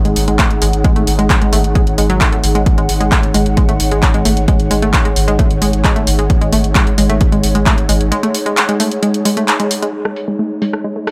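Driving and industrial, this excerpt from a longer peak-time techno piece moves in a straight 4/4 pulse. A punchy electronic kick with a tape-warm edge anchors the groove until 7.8 seconds, alongside a saturated sub bass that is deep, thick and overdriven, filtered low and pumping against the beat until 8.1 seconds. An up-front, overdriven techno kit of handclaps, hi-hat and rim click runs throughout, its hats pumping and filtered, with a small room reverb. A round analog pluck carries the riff with chorus and dub echo, while an airy, breathy pad with a moving notch and slow attack hovers above as texture. After a break from 8.1 seconds and a band accent at 9.5 seconds, a filter sweep on the synth arpeggio sound colors the final section to its close.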